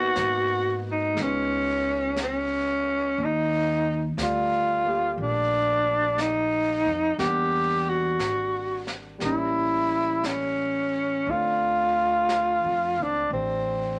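A growling tenor saxophone leads this wistful, melancholic jazz ballad, sitting up front with a breathy, raspy subtone, scooped notes and vibrato over a smooth top, its melody staying in the range from C4 to G4. Behind it, a warm concert grand piano supplies accompaniment in the background with a deep bass, while an upright bass played pizzicato adds a woody tone from its steel strings. A jazz brush drum kit joins at 0.2 seconds, with brushes on a high-tuned snare alongside hi-hat, set quietly beneath the other parts. The swung eighths give the slow 4/4 a relaxed lilt, and the harmony moves through rich extended chords such as Ebmaj9#11 and A7b9 before settling on Dm7. A moderate studio reverb surrounds the group in this short excerpt cut from a longer piece.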